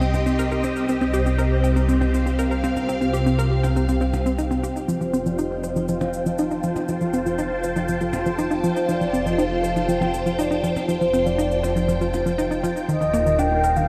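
Expansive and hypnotic, this 120 BPM ambient space-music excerpt in 4/4 sets a lush, phased string machine and a hollow, bouncy square pluck riff with chorus and analog delay over a fat analog bass and delayed shaker and percussion blips, while a faint bubbling stepped-filter texture gives way at 4.9 seconds to a round, horn-like synth lead with vibrato and 12-bit sampler grit, as the bass fades in and the chords move from Cm to F and on to Ebadd9, all drenched in a dreamy hall reverb.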